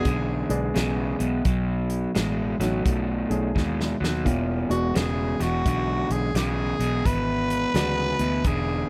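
A dry sound carries this short excerpt of gritty, rollicking electric blues shuffle at 86 BPM with a swung feel, moving through E7 and B7 chords. A raspy, growling tenor saxophone sings the melody up front over a crunchy overdriven guitar riff, a woody upright piano, a round, foam-muted electric bass and a small-room drum kit with a fat snare and punchy kick. The drums break into a fill from 3.6 to 4.3 seconds before the return to E7.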